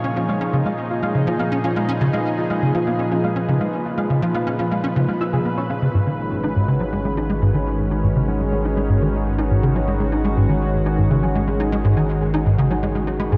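A lush, detuned unison pad and a punchy, saturated sawtooth sequencer bass riff with chorus and tape echo open this cosmic, expansive slice of ambient, sequencer-driven space music at 122 BPM in G# dorian; a soft, gentle pluck with echo adds arpeggios in the background from 0.2 seconds, and at 5.9 seconds, as the harmony moves from C# to G#m, a deep sine sub bass holds a low G#, all set in a huge, dark reverb.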